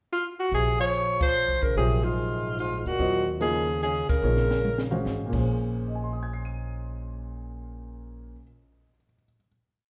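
Modal jazz in a swung 3/4 with a spiritual, intense mood, where a clear alto saxophone states a motif-based melody with vibrato over a breathy tenor saxophone harmony line mostly in sixths, a woody, thumpy pizzicato upright bass in a two-feel, a compact cocktail drum kit keeping time on the hi-hat with sticks and a punchy kick, and a baby grand piano entering at 1.8 seconds with syncopated quartal comping, with band accents and a drum fill leading to a final chord carried by bass and piano in a reverberant recital hall.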